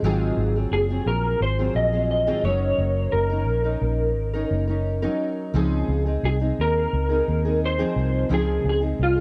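A dry, close sound with little reverb gives this short cut the intimate feel of a 1970s studio session, nostalgic and sunny in mood. It sits in indie pop and bedroom pop territory with a straight, unhurried 4/4 pulse. A fingerpicked dreadnought acoustic guitar carries the accompaniment up front, full-bodied and warm, with audible finger squeak and a warbly pitch drift from its analog chorus. Underneath, a vintage muted electric bass played with the fingers sounds round and foam-muted, sitting close in the mix. From 0.7 seconds an electric guitar through a small old amp takes the melody, its picked tone shadowy, slightly broken-up, compressed and lo-fi, colored by ensemble chorus and tape echo. The harmony moves through Ab13, Gb6 and Dbmaj9 in Db major.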